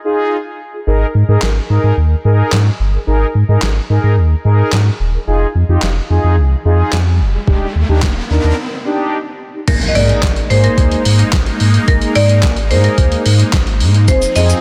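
Dance-pop at 109 BPM in 4/4 with a straight feel, this excerpt from a longer piece sounds driving and bittersweet, moving through Fm7, Absus2 and Ebmaj7. Mellow synth brass opens at 0.0 seconds with a dark, detuned sawtooth tone softened by chorus and a filter swell, pumping against the sidechain. A deep, round sine sub bass arrives almost at once, sitting up front and pumping too, while a boom bap sampler-style kit enters with a gritty, pitched-down, tape-colored character: thumpy kick, medium-tuned snare with soft clipping, hi-hat, shaker, handclaps and crash cymbal. An electronic riser builds from 6.5 seconds into a brief break, and at 9.7 seconds an impact lands as a woody marimba played with hard mallets takes the melody through delay, joined by a lush, full-bodied supersaw pad washed in phaser and sidechain pumping. The mix has light digital reverb and a dense, heavily limited modern master.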